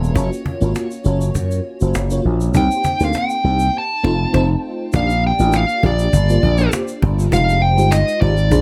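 Polished studio ambience frames this upbeat, glossy slice of 1980s jazz-funk pop, where a growly, up-front slap bass with an envelope filter and a woody cajon with hard hands drive a lightly swung groove, a grainy egg shaker sits faintly beneath, a lush, dreamy FM electric piano with a soft pad layer shimmers with chorus and tremolo, a dark, overdriven lead guitar takes the melody from 2.6 seconds, and the band hits a shared accent at 3.7 seconds.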